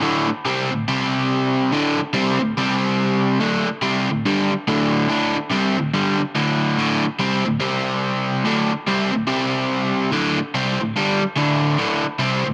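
Gritty and heavy, this short rock excerpt is cut from a longer piece and moves at 143 BPM in 4/4 with a swung eighth-note feel. A lone overdriven electric guitar carries the whole passage from 0.0 to 12.5 seconds, picked and double-tracked, sitting up front with a thick, saturated edge. Its range runs from D2 up to C4, and a spring reverb hangs on its tone, set in a light room ambience. The harmony rocks between D5 and C5 power chords, with the opening section giving way to a second section at 3.4 seconds, where D5 stretches out before the back-and-forth resumes around 7.6 seconds. Tuned slightly sharp of standard pitch, the guitar has a raw, muscular bite that suits the swung groove.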